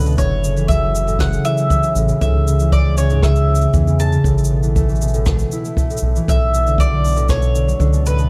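Folktronica at 118 BPM in B dorian, delicate and intimate, moving through F#m7, C#m, Asus2 and Bm7 in this short cut from a longer piece. A woody, double-strung mandolin carries the melody with delay, over bright, ringing fingerpicked concert harp arpeggios softened by a low-pass filter. A round, deep analog bass, a boomy brushed kick entering at 0.2 seconds and faint cabasa and rim click sit in a dark, close production with little reverb.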